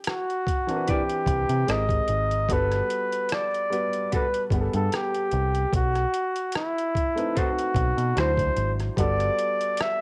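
R&B with a neo-soul lean, this soulful excerpt moves at an unhurried 74 BPM in G major with a lightly swung sixteenth feel, its chords drifting from Cmaj9 through Abmaj9 to Gmaj9 before a B7b9 and D9 lead home. A gritty, pitched-down sampler-style drum kit with a thumpy kick, hi-hat and rim click sits up front with cassette grit, while a punchy, smooth-topped flugelhorn carries the solo melody and a round, dark picked electric bass enters at 1.3 seconds to anchor the low end. Filling in beneath are a woody upright piano with audible action noise and a clean, hollow-body jazz guitar playing a second line until 8.3 seconds, all wrapped in a home-recorded cassette sound with digital ambience.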